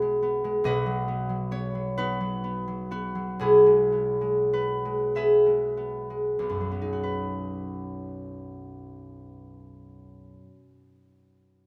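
This classical excerpt for solo concert harp moves in 6/8 with rubato, its dotted-quarter pulse sitting slowly between 30 and 49 BPM and slowing down over the first 7.0 seconds. The mood is serene and graceful, set in B major with the tuning pitched at A4 = 445 Hz. The harp plays alone from 0.0 to 11.0 seconds, fingerpicked and ringing, spanning B1 to E5 with an acoustic, warm tone placed up front. The harmony rests on B, touching E over B at the outset and again at 3.4 seconds before settling back on B when the second section arrives at 7.0 seconds. A light reverb gives the strings a gentle sense of space, and the passage is cut from a longer piece.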